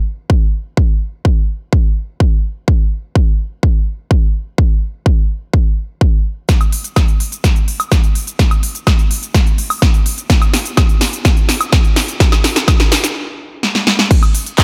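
EDM at 126 BPM in a straight 4/4, this anthemic, euphoric fragment of a longer piece opens at 0.3 seconds with a layered, overdriven electronic kick drum that sits punchy and up front under light reverb. At 6.5 seconds a big-room dance kit joins for a build-up, adding a punchy snare, crisp hi-hats, handclaps, shaker, woodblock, ride and crash cymbals, its produced sound re-recorded in a small room. The drum fills drive the build toward a stop at 13.2 seconds, before a brief final fill closes the passage.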